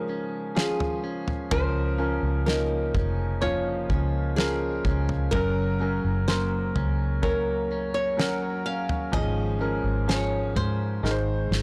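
A blown-out, overdriven recording with light reverb and a small-room ambience carries this tender, hopeful pop ballad fragment, where a fingerpicked flamenco guitar sings the melody over a clear, open concert grand piano, compressed arpeggios from a clean electric guitar and a dark, round, foam-muted bass, while a dry, damped 70s drum kit with a fat snare and tight kick enters at 0.6 seconds and closes with a fill at 11.0 seconds.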